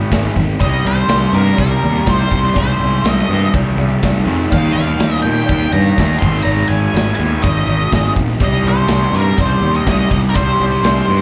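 A gritty, driving stretch of classic rock in C minor, this short excerpt moves at 123 BPM in a straight 4/4 and sounds like a live gig heard through a club PA. A fuzz-soaked, overdriven picked electric bass sits up front, while a big acoustic rock kit with a punchy kick, medium-tuned snare and bright crash and ride cymbals drives underneath, joined by a metallic cowbell with slapback echo tucked in the background. Two rhythm guitars carry the riff: an overdriven semi-hollow guitar set back in the mix with spring reverb and slapback, and a raw, lo-fi garage guitar with its own overdrive and slapback. From 0.6 seconds a dark octave-fuzz lead guitar takes the melody high above, colored by wah, distortion, plate reverb and tape echo. The chords circle through Ab, Cm, Ab/C and Ebadd9 before returning to Ab and Cm.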